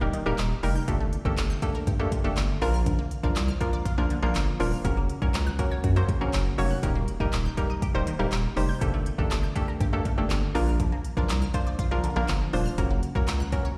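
A deep house drum kit sets a straight 4/4 pulse at 121 BPM, its deep kick, smooth hi-hats and handclaps sitting up front beneath a saturated sub bass that pumps with sidechain in this euphoric, carefree dance-pop cut in Bb major. A hollow, bouncy square-wave pluck with chorus and slapback echo carries the accompaniment through chords moving from Eb to Gmadd9, Bb and Gb. Alongside it, a juicy, squelchy sawtooth blip pluck with ring modulation, phaser and delay spins arpeggios, all heard as a live gig through the venue's PA with the reverb of a recital hall.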